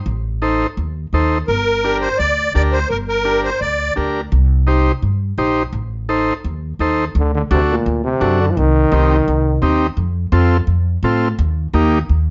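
A woody, pizzicato upright bass opens this fiery, danceable latin excerpt in G minor at 170 BPM, joined almost at once by a buzzy, overdriven vintage combo organ. A reedy, shimmering musette accordion carries the melody briefly from 1.5 seconds, wet with plate reverb, before a clear, punchy trombone with vibrato takes a solo from 7.2 to 9.6 seconds. The parts sit up front in a light reverb, with the highest treble trimmed away.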